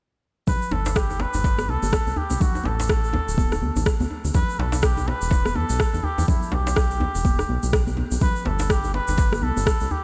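Afro house at 124 BPM in 4/4 with a swung sixteenth-note feel, this earthy, spiritual excerpt moves through C5, D5 and E minor before returning to C5. A cup-muted trumpet carries the solo melody in a soft, veiled jazz style with scooped notes, its line sitting between E4 and B4 and trailed by delay. Beneath it, a round analog bass made from detuned sawtooth, sine and triangle tones holds dark, sustained low notes with a fast attack and sidechain pumping, alongside a deep electronic kick. Congas with a ringing tone under soft hands and a medium-tuned djembe struck with hard hands sit close but in the background, while a grainy, bright tube shaker sounds distant, as if in a large room. An overdriven, layered electronic rim click joins at 1.0 seconds, and light reverb with studio ambience surrounds the whole groove.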